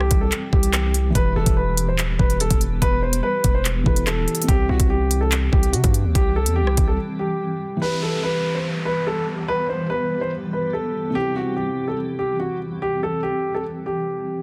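Drill hip hop in E minor at 144 BPM with a half-time feel, this menacing, dark excerpt opens with a knocking electronic drum kit of kick, crisp hi-hats, handclaps and rim clicks alongside a heavy, distorted 808-style bass, both dropping out around 7.0 s for a short break. Up front, a dark grand piano carries the melody with audible action noise and a digital delay, over a soft felt-muted upright piano with thick felt and a cloudy, blurred granular pad whose chords evolve beneath them as the harmony moves between C and Em. After the break, an electronic downlifter enters at 7.8 s, leaving the pianos and pad to drift through the rest of the dense, heavily limited and fairly dry mix.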